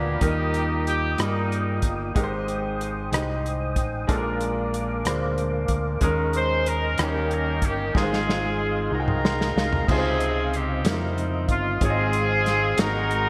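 Slow gospel in a lilting 6/8, uplifting and soulful, this short passage cut from a longer piece is wrapped in a lush hall reverb and a bright 1980s-style digital sheen. A tight, vintage horn section carries the melody up front with a clear tone and light vibrato, sounding for the first couple of seconds and returning at 6.4 seconds to play through to the end. Beneath it, a concert grand piano with a deep bass and a subtle chorus plays accompaniment, while a soft, flute-like tonewheel organ holds sustained chords through a slow rotary speaker and chorus vibrato. A round, punchy fingered electric bass anchors the low end, and a warm soul drum kit with dark cymbals, a punchy kick and gated reverb enters at 0.2 seconds. The drums play a fill from 8.0 seconds, joined by a piano fill near its close, as the harmony moves from rich major-seventh and dominant colours into a Dbmaj9 that opens the final section.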